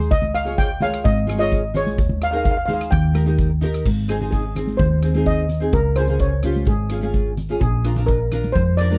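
A straight, bouncy 4/4 calypso groove at 128 BPM in Ab major, driven by an up-front street-band drum kit with a boomy kick, dark cymbals, hi-hat and rim clicks, a punchy, round hollow-body electric bass, and soft-handed, high-tuned congas sitting in the background. A small, fingerpicked nylon-string guitar, double-tracked, fills in the chords beneath a mellow, shimmering steel pan played with soft rubber sticks, which carries the melody and takes a festive solo from 3.9 seconds. The sound is dry and close, like a 1970s studio recording, and this excerpt is cut from a longer piece.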